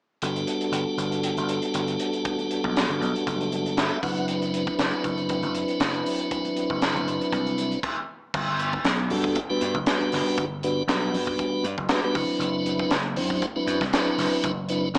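This short excerpt has a lightly reverberant, small-speaker sound that gives it a compact, boxy character. It is slick, bright electric jazz fusion in G major at 118 BPM in 4/4, with a gentle sixteenth-note swing. A piping, scooped tonewheel organ sits up front through a slow rotary speaker and light overdrive, comping on Gmaj9 and D13/F# and adding a fill from 3.5 to 4.3 seconds. A growly, punchy vintage slap bass with an amped electric tone holds down the low end beneath it. A crisp fusion drum kit with a high-tuned snare, tight kick, hi-hat and crash cymbal sounds acoustic and close in a small, pumping room. The full band stops together at 7.8 seconds before the second section begins at 8.3 seconds, cycling through the same two chords.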